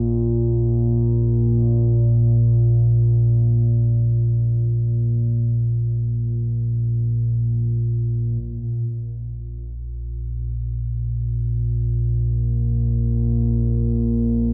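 Floating in free time, this cavernous, desolate ambient fragment cut from a longer piece features a single deep rumbling drone sounding alone from 0.0 to 14.5 seconds between Bb1 and Bb2, its ominous wave-folded triangle and sawtooth tone swelling from a slow attack into a dark, sustained hum with a long release and built-in reverb, held up front in a light reverb, with the music shifting into a new section at 8.4 seconds.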